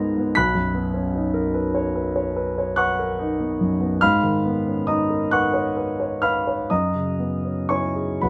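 Classical impressionist solo piano in B lydian, hazy and dreamy, drifting in a slow, rubato 9/8 at around 36-52 BPM, and tuned slightly low to A4 = 436 Hz. A single concert grand carries the whole fragment, its warm, open tone spanning a deep bass up into the high register with long sustain, moving through Bmaj9, G#m11 and F#9sus4 chords. Close, detailed microphones place the piano up front, with light reverb around it, in this short cut from a longer piece.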